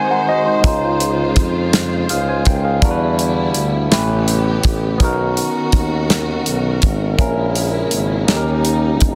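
A clear tuba carries this slow, sultry R&B passage in six-eight, sitting up front with a pop-style voice touched by vibrato and serving as both solo and bass. Alongside it, a barky tine electric piano, lightly overdriven through a combo amp and colored by phaser, supplies the accompaniment from the opening moment. A lush studio string section holds bowed, expressive chords with vibrato from a distant place in the mix. A damped 70s acoustic kit joins with the tuba at 0.6 seconds, its medium-tuned snare, tight kick and hi-hat dry and prominent. The yearning harmony drifts through seventh chords, moving from C#maj7 and Em7 through A9 and Bmaj7 to a closing D#7, and the little reverb and dense, heavily limited modern master keep this short cut close and intimate.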